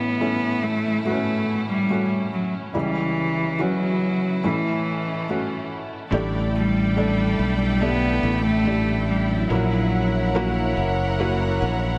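A slow, straight 4/4 pulse at 71 BPM carries this melancholic pop passage, cut from a longer piece and tuned to A4 = 438 Hz, with an air of longing. A rich, bowed solo cello sings the melody up front with smooth vibrato, over a felt-muted upright piano whose soft, intimate tone, short sustain and audible action noise give the accompaniment a close, natural feel. Behind them a distant, lush studio string section holds sustained chords, moving from A through C#dim and back to A. At 6.1 seconds a punchy, bright fingered electric bass arrives up front, joined by a very quiet, clean electric guitar recorded direct and playing picked, compressed arpeggios as the harmony shifts to A7sus4 and then F#7. The cello falls away at 10.6 seconds, leaving the piano, strings, guitar and bass to close the passage. A light reverb and small room ambience surround the mix, and lossy compression artefacts can be heard.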